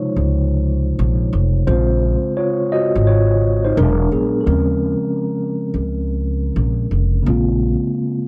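Swung sixteenths at 86 BPM in 4/4 carry this hazy, reflective lo-fi hip hop excerpt in Bb minor, where an up-front, mellow tine electric piano, softened by cassette tape and a low-pass filter as if heard through its built-in speakers, takes a solo over chords such as Eb13sus4 and Bbm9 until 7.2 seconds, while a pizzicato upright bass adds a woody, thumpy low end inside a small, lightly reverberant room with a gritty, transformer-saturated hardware sound.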